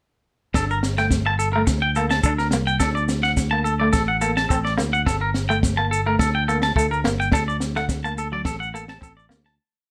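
A lightly reverberant mix carries a danceable, bittersweet highlife guitar band groove at 106 BPM in G harmonic minor, where a twangy, clean electric guitar with slapback echo spins sixteenth-note pedal-note arpeggios over a hollow-body guitar ostinato with tremolo, a growly fingered bass playing a dotted figure, a compact cocktail drum kit with a punchy kick and high-tuned snare, and grainy vintage maracas, all cycling between Gmadd9 and D before fading out from 7.3 to 9.6 seconds.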